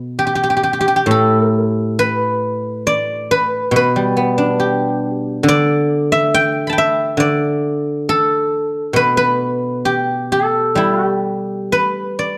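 The recording has a dark production with light reverb, and a silvery guzheng sits up front. This short excerpt of traditional Chinese solo plucked-string music has a serene, pastoral mood. The guzheng plays alone for the full 12.4 seconds, its fingerpicked acoustic tone ringing warmly across a span from A2 up to B5. The time flows freely in a rubato feel over a loose 4/4 pulse, giving the passage an unhurried, serene character. It stays in a single section throughout, a brief window onto a longer piece.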